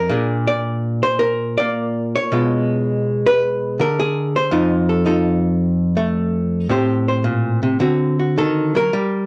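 A swinging 4/4 pulse at 109 BPM carries a loose, rubato feel, with the eighth notes lilting in a relaxed shuffle. This short excerpt of solo jazz sits in F mixolydian and is played by a lone archtop guitar, miked and amplified, which carries the whole 9.3 seconds from F2 up to D5. The hollow-body tone is clean, picked and gently compressed, placed up front with a mellow, rounded glow. The harmony moves through Bb7, Bdim7, F7, Am7 and D7, giving the passage a bluesy, turnaround flavour. A moderate studio reverb adds a touch of space, while the home cassette recording lends the sound a soft, slightly worn character.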